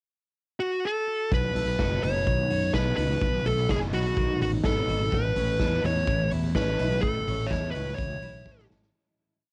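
Jangly indie pop at 126 BPM in B mixolydian, youthful and bright, where an up-front fuzz lead guitar states a motif-based melody over a pickup from 0.6 s before a punchy, saturated garage drum kit with off-beat open hats, a rounded, melodic fretless electric bass and a twangy, compressed twelve-string electric guitar fingerpicking a roll pattern in the background join at 1.3 s, the chords moving from B to A in this small-room home cassette recording that fades out from 7.0 s as a drum fill closes the verse.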